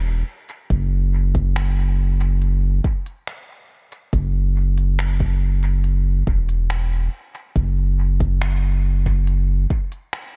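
A straight, unhurried 4/4 pulse carries this hazy, spacious ambient dub fragment, cut from a longer piece, with a deep, tape-warm electronic kick drum sitting up front. A soft, round sub bass with a triangle and square-wave character holds low and sustained from the opening, while an organic electronic kit adds finger snaps and smooth hi-hats treated with dub echo. The drums carry the character of being re-recorded in a small room, and the overall mix stays dry, with little reverb.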